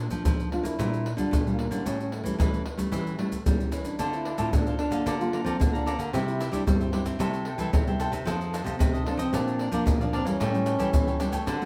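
Samba and choro at 112 BPM in straight 4/4, this lively, bittersweet excerpt comes from a longer piece played by a band live in one room with moderate studio reverb. A nylon-string guitar carries the accompaniment with a fingerpicked classical touch, while a second nylon-string guitar, thumb-plucked and warm, holds down the bass line. Maracas, surdo and pandeiro sit up front with a tight surdo and hard hands, though the percussion also carries a distant, large-room quality. From 0.5 seconds a mellow, close-miked trombone takes the solo melody in a jazz style, shaded with vibrato. At 4.0 seconds a bright, crisp cavaquinho enters with picked accompaniment, adding sparkle over harmony that moves from Bbmaj7 through A7, Dm7 and F7 before returning to A7.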